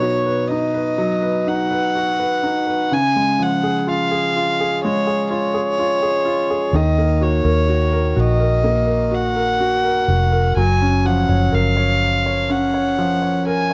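A heartfelt pop ballad excerpt in F# major at a slow 62 BPM opens with an airy, floating violin melody sung out up front over a clear, polished concert grand piano with deep bass and long sustain. At 6.7 seconds a dark, round, foam-muted electric bass enters with a punchy tone as the chords move from B through C# to D#m7 and F#maj7. A small room's moderate reverb surrounds the parts, and the whole recording carries the worn, warbling pitch drift of old cassette tape.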